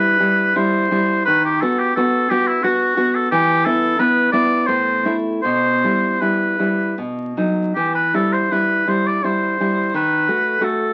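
A clear oboe with light vibrato sings a yearning, elegiac melody in this romantic duo, its classical tone sounding distant and roomy even as it sits up front. Beneath it, a nylon-string guitar with fresh strings and a deep, warm body provides fingerpicked accompaniment in a rubato triple metre, with audible finger squeak as it moves through harmonies in E minor that close on a B7/D# at 9.9 seconds. The pair play in moderate studio reverb, heard through the crackle of a very old 78 rpm record, in this short passage cut from a longer piece.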